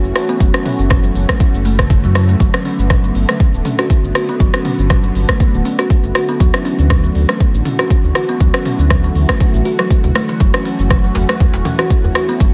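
A woody, plucked kalimba plays short arpeggios from 0.2 seconds, its dub echo and sidechain pumping giving this spiritual afro house excerpt a boxy, small-room charm over smooth, chorused analog pad chords that pump in time. A round, dark analog bass and a deep, up-front electronic kick (from 0.4 seconds) anchor the swung groove, while a produced deep house kit adds smooth hi-hats, cabasa, rim clicks and toms with studio reverb. A tight, cracking djembe appears briefly in the background at 11.2 seconds as the chords move from F#m7 through Gadd9 and Dadd9 and back to F#m7.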